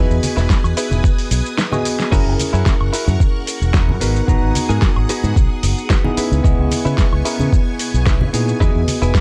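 A compressed, overdriven electronic kick thumps up front from 0.5 seconds in this sensual, cosmic nu-disco fragment at 111 BPM in C# dorian, alongside a punchy, envelope-filtered fingered bass, a bell-like tine electric piano with vintage 12-bit sampler grit and slapback echo, a clean, picked guitar riff bathed in lush chorus, slow-attack sawtooth string-machine chords that pump under sidechain, a layered electronic pop kit with a fat snare and a fill at 1.6 seconds, and soft-handed congas in the background, all in a dry mix as the chords move from Emaj7 through F#7, G#m7 and C#m7.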